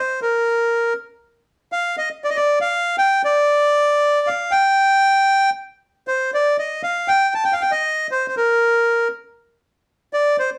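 Sultry and tense, this short tango fragment in G minor moves at 118 BPM with a rubato feel, as a solo bandoneon plays alone from 0.0 to 10.5 s between Bb4 and A5, its reedy, bright, full tone sitting up front and close-miked, while the phrase returns at 6.3 s within a moderate studio reverb that places the listener further back in the room.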